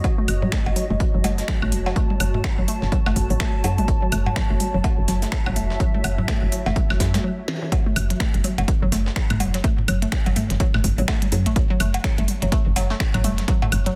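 A punchy, layered electronic kick sits up front from the start, joined by a hollow, bouncy square-wave pluck riff with chorus, tape echo and sidechain pumping, a gritty, pitched-up breakbeat kit of hi-hat and snare tucked in the background, and tape-warm electronic toms, cowbell and woodblock trailing dub echo. A cloudy, wave-folded granular pad with its own reverb drifts above in a mellow haze, while a filter sweep moves through the opening section of this quirky, clinical minimal techno piece in F# dorian at 125 BPM with a swung 16th-note feel. From 0.3 seconds a soft, round, woody FM bass pumps underneath, and a minimal click kit adds finger snaps, clicky hats and a tiny soft-clipped snare that sounds re-recorded in a large room. The pad ends at 7.3 seconds, and a brief break with a drum fill leads into the drop at 7.7 seconds, all sitting on a single F# minor chord. The mix is dense and heavily limited, set in a digital ambience, and this is a section cut from a longer piece.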